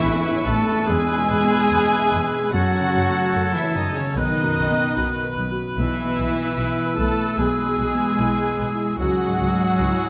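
This is a cinematic, emotional film score for orchestra, uplifting and moving, unfolding at an unhurried, rubato pace through a short passage cut from a longer piece. A muted violin section carries the melody with a veiled, con sordino tone and vibrato, while a second muted violin section, a distant silver flute high above, a clear oboe and a very quiet, mellow clarinet weave supporting lines around it. A felt-muted upright piano gives the accompaniment an intimate, soft character, joined by a very quiet muted viola section. A mellow French horn section holds sustained chords from a roomy distance, and a very quiet concert harp rings out thumb-plucked arpeggios. Underneath, a dark muted cello section and a lush double bass section, which enters at 0.1 seconds, anchor the bass as the harmony moves from Aadd9 through F#madd9 and B to settle on C#m at 9.0 seconds, all captured with close, detailed microphones and light reverb.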